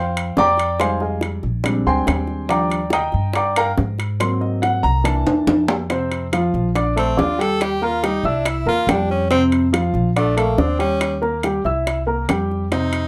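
Sophisticated and danceable, this Afro-Cuban jazz excerpt moves in a straight 4/4 groove taken from a longer piece. A dark, mellow grand piano opens with an intimate solo, its action noise audible, while a woody, thumpy upright bass plucks beneath it up front. Ringing metal-shell timbales come in at 0.2 seconds and round, low-tuned bongos sit close and dry in the background, with a drum fill leading into the second half. At 7.0 seconds an edgy tenor saxophone takes over as soloist, punchy and forceful with vibrato, carrying the line up front over rich jazz chords in a moderate studio ambience.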